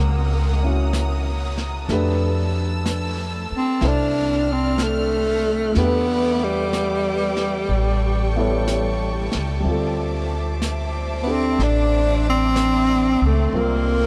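A slow swung 4/4 at 62 BPM sets this wistful, intimate jazz ballad excerpt, with an up-front, woody pizzicato upright bass anchoring a concert grand piano whose action noise is audible, while a string section holds sustained chords bowed sul tasto with a soft attack and light vibrato. A vintage brush kit of brushed snare and hi-hat enters at 0.9 seconds in the background with a rolled-off top, and at 3.6 seconds a breathy, close-miked tenor saxophone takes the melody in subtone with vibrato, trailed by a diffuse ambient delay. Chords move from F#7 through Fmaj7, Em7, A7 and Dm9 to Cm7, all bathed in a huge, dreamy reverb.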